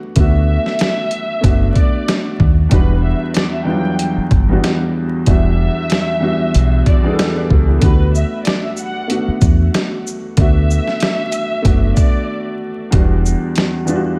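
A swung, gritty boom-bap groove from an overdriven, sampler-style soul drum kit with a thumpy kick and shaker drives this moody hip-hop excerpt, anchored by a round, foam-muted dub bass and a dark, mellow grand piano with a vintage cassette tint, while a distant, lush violin section carries the melody with soft-attack vibrato and tape echo before a brief break at 12.3 seconds, all set in a dreamy, reverb-soaked mix dusted with vinyl crackle.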